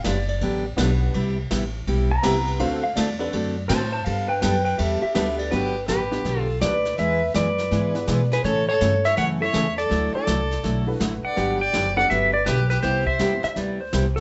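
Western swing country with a playful, swinging lilt opens on a bright, compressed pedal steel guitar solo over picked full-bodied acoustic guitar, woody pizzicato upright bass, brushed drums with dark cymbals and a jangly, detuned honky-tonk upright piano, then at 5.5 seconds a dark, clean lap steel guitar takes the melody with volume swells while a clear fiddle with light vibrato joins on a second line, in this excerpt cut from a longer piece.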